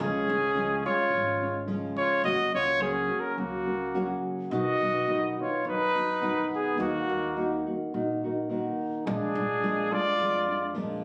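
A proud, festive mariachi excerpt in Eb minor at 106 BPM opens with a mellow, classical-style trumpet carrying the melody up front with light vibrato, a smooth top and slapback echo, joined from the start by a second trumpet playing a supporting line, a fresh-stringed nylon-string guitar thumb-plucked in classical fashion, and a woody, growly pizzicato upright bass sitting low beneath them, all captured on a phone in a club room with light reverb as the chords move from Db through Ebm to Bb7 before the music cuts off near 11.0 seconds.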